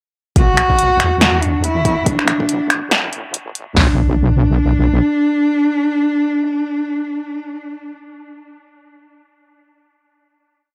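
A swung half-time beat at 141 BPM drives this brooding, cavernous deep dubstep piece in B minor, where two up-front deep house drum kits (one with a deep kick, punchy snare, toms and hi-hat, the other with finger snaps, snare and hi-hat) ride a filter-swept build under a heavy, detuned sawtooth wobble bass with long gliding notes, chorus and tube saturation, while a bowed cello with vibrato, portamento and dub echo sings expressive call phrases, settling onto a final B minor chord at 3.8 s and ringing until 7.9 s in a dry, gritty recording with light reverb.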